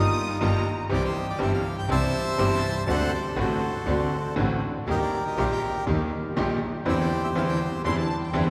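A reedy, dark bandoneon carries the melody up front in this dramatic, passionate tango excerpt at 122 BPM, played rubato in 4/4, until it stops at 7.8 s. A warm, expressive bowed violin section plays a second line briefly at the start and again from 7.8 s to the end. Beneath them, a bright, brilliant concert grand piano supplies accompaniment with deep bass, a bowed double bass sounds earthy and distant with light vibrato, and a very quiet, lush string section adds stabs, all set in the long wash of a cathedral-like hall.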